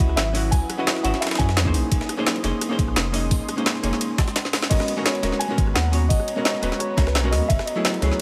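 Rolling and lush, this excerpt of liquid drum and bass at 172 BPM sets a dark, boxy grand piano melody with digital delay, dropping out at 2.0 seconds and returning at 4.7, over a clean hollow-body archtop guitar with delay, an ethereal detuned pad with chorus, tremolo and sidechain pumping in the background, a round sine sub bass up front, a gritty high-passed breakbeat kit, an overdriven kit with a woody snare and bright hats, and a knocking overdriven electronic kick, with a drum fill at 4.4 seconds and chords moving from C#m11 to F#m11.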